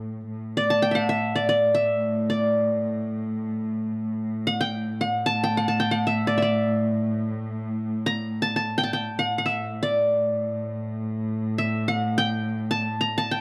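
A plucked qanun sits up front in this passionate, stately piece of Turkish makam ensemble music, its bright-edged triple strings carrying the melody between D5 and Bb5 from 0.6 seconds onward. Beneath it, a warm chamber cello section holds a bowed drone on A2 from the very start, earthy in tone with a smooth top and a light vibrato. The cellos sit a little lower in the balance than the qanun, though both are placed close to the listener. The sound is dry and intimate, like a 1970s studio session, and the passage is cut from a longer performance.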